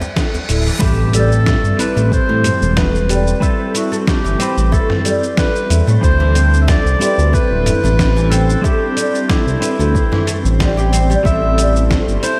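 Organic downtempo with a meditative, earthy mood, where a gritty, overdriven sampler-style kit of hi-hat, shaker, snare and toms starts from the first moment alongside a brief djembe touch and a reverse cymbal rising into an impact. These open onto woody, plectrum-plucked oud arpeggios with tape echo, a deep electronic kick, an up-front sawtooth synth bass with sidechain pumping, a distant classical-style clarinet melody with analog delay, clean picked electric guitar with lush chorus, and a very quiet twinkling granular texture entering at 1.8 seconds, all set in a dreamy hall reverb.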